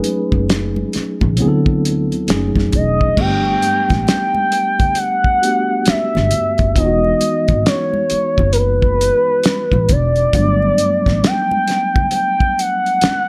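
A gliding portamento lead with a smooth, sawtooth-and-sine tone, soft attack, vibrato and chorus sits up front, carrying a sustained melody over a mellow tine electric piano in this late-night, sultry neo-soul excerpt at 67 BPM with a swung sixteenth feel. A cloth-damped, thuddy drum kit with dark cymbals, a fat snare and a tight kick sounds gritty and saturated, while a woody pizzicato upright bass enters at 0.3 seconds and very quiet, close congas add soft-handed brightness. Chords move from F#m69 and D13 into Gmaj7 and Emaj9 under light reverb, and the piece is cut from a longer work.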